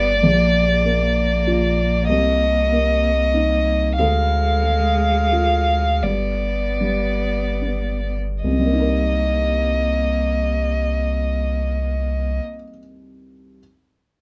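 A dark, bowed violin opens this longing, melancholic neoclassical fragment for piano and strings, sung by a single player with smooth, even vibrato up front, over a felt-muted upright piano, a clear cello and a deep, thick sub bass that all begin together. The music moves in a rubato three-beat lilt, and the pace slows down from 3.0 to 8.4 seconds as the harmony passes from Bb through Cm7 and Ddim to G. The piano's accompaniment is soft, mellow, intimate and a little boxy, while the focused cello sits close yet in the background, adding a quiet vibrato second line beneath the violin. The saturated bass has a fast attack and a sustained tone and stays prominent, giving the low end a weighty pull. A second section arrives on Cm7 at 8.4 seconds, and after the strings and bass stop, the piano carries on alone in a moderate small-room ambience until the cut.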